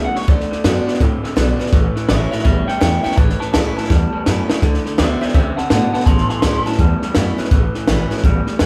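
A bright, twangy electric guitar solo opens this rollicking, rowdy swung rockabilly excerpt over a lo-fi, slightly broken-up electric riff bathed in spring reverb, a full-bodied picked acoustic guitar in the background and a woody, thumpy pizzicato upright bass, with a compact cocktail drum kit joining at 0.2 seconds. The drums sit up front, with a punchy kick, a high-tuned snare and hi-hat, and throw in a fill at 3.9 seconds as the chords move between D and A. The lead guitar drops out at 7.0 seconds while the rest of the band keeps going in what sounds like a live take in one lightly reverberant room.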